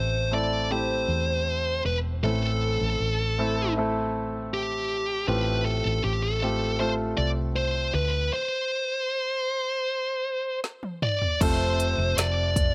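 A distorted, high-gain lead guitar carries the melody of this melancholic pop ballad in A minor at 78 BPM in 4/4. Beneath it sit a clear, polished baby grand piano and a round, punchy hollow-body electric bass, moving from Am7 to Fadd9/A. A stop arrives at 8.3 seconds, and a deep house drum kit with a woody snare and deep kick enters at 10.6 seconds with a fill before the harmony lands on F at 11.4 seconds. The dry sound keeps the guitar and drums up front in this emotional passage cut from a longer piece.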